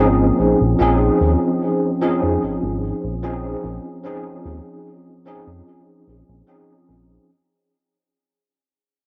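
A bell-like, bright tine electric piano, clean and up front yet coloured by ensemble chorus, cassette tape grain and tape echo, opens this woozy, faded vaporwave fragment at 74 BPM in a straight 4/4 over a glossy, mellow chorused pulse-wave synth bass with a retro plucked attack, settling on a Bbm11 chord at 0.4 seconds as the whole short cassette-recorded snippet, set in a moderate studio reverb and tuned slightly flat to A4 = 438 Hz, fades out across its 7.3 seconds.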